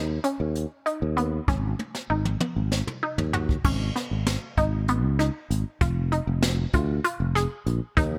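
Brooding and driving, this short cut from a longer progressive instrumental moves in an uneven 7/8 with a straight feel. An analog pluck plays arpeggios throughout, its round, nasal sawtooth tone detuned and edged with a noise layer, with a fast attack and short decay, colored by chorus and phaser. Beneath it, a fretless electric bass sustains low, sounding bright, direct and growly. A jazz kit played with brushes enters at 0.2 s, heard in a small room with dark cymbals, a high-tuned snare and a boomy kick, and it works in a drum fill from 1.8 to 3.6 s before the music moves into a new section. All three parts sit up front in a dry sound with little reverb, and the harmony shifts through a minor color before settling onto Fm at 5.8 s.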